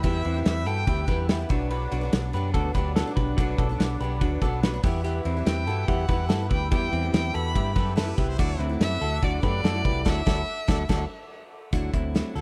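A dry recording captures a wistful, restless passage of jangly indie pop at 144 BPM in straight 4/4, moving from Em to Bm to Dadd9 over a loose indie drum kit with dark cymbals and a punchy kick up front beside a round, foam-muted vintage electric bass. A clean, hollow-body semi-hollow electric guitar plays arpeggios through tape echo, while a shimmering, octave-doubled twelve-string acoustic guitar is picked in the background under a detuned sawtooth analog pad with chorus. A clear, bowed violin with smooth vibrato carries the melody, returning at 5.5 seconds; a brilliant trumpet adds a second line in the background from 7.8 seconds, and the band hits an accent at 10.1 seconds.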